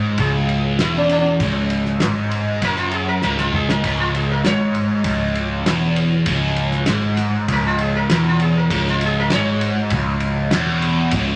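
An up-front, overdriven, double-tracked electric guitar riff with phaser opens this hazy, trippy psychedelic rock excerpt alongside a round, dark hollow-body picked bass, while a buzzing, shimmering sitar with sympathetic strings solos over a cloth-damped, thuddy drum kit with a fat snare, dark cymbals and a drum fill at 3.2 seconds, the whole piece steeped in a wet large studio reverb.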